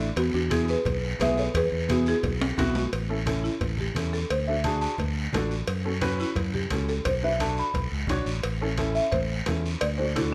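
A buzzing, woody marimba played with medium mallets carries the melody in this joyful, festive cumbia at 174 BPM in A major. It enters at 0.2 s and takes a solo from 2.9 s, just after a drum fill. Beneath it, a round, punchy fingered electric bass sits up front beside a dark, mellow upright piano with long sustain, while raspy, distant guiro, ringing cowbell and timbales, and low-tuned congas with thick skins in the background drive the percussion over chords moving from E through A, D, F#m, Bm, A and D in a moderate large-studio reverb.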